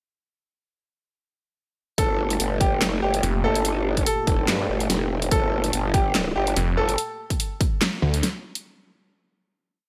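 At 2.0 s a heavy, aggressive wobble dubstep drop hits at 144 BPM in G minor, with a punchy, tape-tinged electronic kick and a half-time kit of huge snare, claps and bright hats up front in studio reverb, beneath a growling, saturated growl bass whose formant-filtered wobbles shift speed. A bright, vintage grand piano repeats a riff with delay over a lush, detuned supersaw pad that pumps in the background through a low-pass filter. A snarling, distorted sawtooth bass cuts in at 3.2 s with chopped phrases answering the growl bass, returning at 6.6 s and carrying on until 8.2 s, just before the drums close at 8.6 s.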